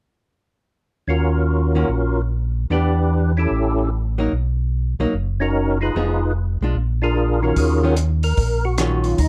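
Soul jazz organ trio music in Eb minor, swinging at 148 BPM in 4/4 with a late-night, soulful mood, cut from a longer piece. A percussive tonewheel organ carries the melody from 1.1 seconds, its fat, lightly overdriven tone marked by third-harmonic percussion, key click, chorus vibrato and a slow rotary speaker, set in plate reverb. Beneath it a second, mellow tonewheel organ plays the bass line in a round, clean voice, also with chorus vibrato and slow rotary. A hollow-body archtop guitar, picked and compressed with a clean electric sound, adds accompaniment from 1.8 seconds, moving through changes such as Ebm7, A7 and Bmaj7. A compact cocktail drum kit arrives only at 7.6 seconds as the second section begins on Ebm9, bringing hi-hat, rim click and a punchy kick with a rolled-off top. The production is dark and warm, with light reverb.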